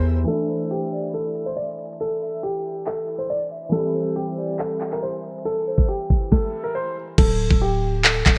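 Trap-flavored hip hop at 139 BPM in a half-time 4/4 feel, this brooding, melancholic excerpt is cut from a longer piece. A dark, intimate grand piano carries the melody up front, its action noise audible through a low-pass filter and delay, while a second concert grand with deep bass plays accompaniment under an ensemble chorus until 7.2 seconds. From 0.3 seconds an overdriven trap kit with a knocking kick, sharp snare, crisp hats, claps and a crash sits forward with a gritty 12-bit sampler character, and a filter sweep runs through the opening section. A soft, woody clarinet-like synth lead with vibrato hovers in the background as a second line, and the harmony moves from Dsus2 to C. At 7.2 seconds the hi-hats drop out and a growling, buzzy 808-style bass returns up front over a D5 chord. Light reverb and digital ambience give the mix a bright 1980s-style sheen.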